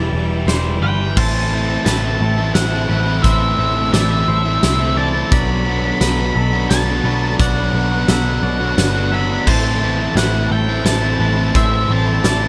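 Post-rock in 3/4, this cathartic, melancholic fragment opens with a brief build-up over an Em chord before settling onto Am, moving through Bm7 and back. A very quiet, lush string section holds smooth bowed chords throughout, while two clean, twangy electric guitars play delayed arpeggios in the background, the lower one picked and the upper one fingered, with the lower one dropping out at 1.2 s. A bright overdriven semi-hollow guitar plays a riff from the start, joined at 1.2 s by a second overdriven guitar riff, and a dark, round, foam-muted bass sits up front with a punchy attack. A huge arena drum kit enters at 0.5 s with a fat snare, punchy kick and bright cymbals in a big natural room. Over it all, a dark octave-fuzz lead guitar carries the high melody, giving the passage its distorted edge within a light studio reverb.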